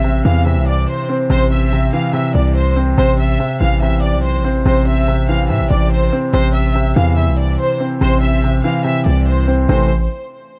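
A violin section, a felt-muted upright piano and a hard-hitting 808-style bass all sound together from the very start of this ominous, dark drill excerpt, cut from a longer piece and moving with a heavy half-time feel. The violins carry the melody between C5 and F5, their bowed ensemble tone lush and focused, with vibrato and a close, symphonic presence softened by a low-pass filter. Beneath them the upright piano plays accompaniment in its lower-middle register, its thin felt giving a soft, mellow, intimate sound that sits up front, also shaded by a low-pass filter. The 808 bass is the loudest part, punchy and sine-based with a noise layer, a fast attack and a decaying tail, sitting up front and lingering briefly after the violins and piano stop at 9.9 seconds. The whole track rests on a single minor chord in a small room ambience, with a rolled-off top end that keeps the mood shadowy.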